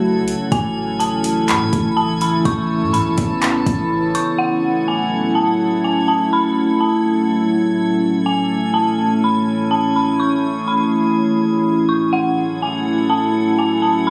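Hazy and melancholic, this atmospheric cloud-rap cut from a longer piece moves in a half-time feel, built on a glassy FM pad holding ethereal chords up front, with a drifting glass-harmonics texture of bright, calm overtones shimmering above it throughout. A dark detuned synth bell carries an eerie, inharmonic, warbling melody through chorus and tape echo from 0.5 seconds. A deep, boomy 808-style bass and a smooth R&B drum kit of soft kick, metallic hats and handclaps drop out around 4.1 and 4.3 seconds respectively, leaving the pad, bell and texture to float in light room reverb with a phone-recorded, compressed sheen.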